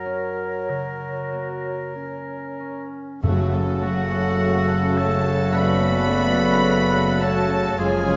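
Moving at a slow 46-54 BPM in 4/4 with a rubato feel, this short passage from a slow romantic orchestral movement sounds warm and tender, opening in F# major before turning to F# minor at 3.2 seconds. At the start, woodwinds carry second lines over a very quiet, ringing fingerpicked harp arpeggio: a clear clarinet, an airy, hollow flute in the background, and a distant, roomy oboe with light vibrato, while a solo bassoon supplies accompaniment beneath. At the shift to minor, the orchestra fills out as floating, sul tasto violins add a background second line, a woody, very quiet viola section joins the accompaniment, cellos and double basses settle on a soft-attack bass, and soft-mallet timpani sound a round F# until 4.9 seconds. Vintage-toned brass also enter there, with the trombones holding tight, very quiet chords and the trumpets placing background stabs. From 3.8 seconds a dark, intimate studio violin section takes the melody between F#5 and B5 with a smooth top, supported by distant French horns sustaining chords. 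The whole sits in a wet scoring-stage reverb with a 1.8-second decay that lends the ensemble its space.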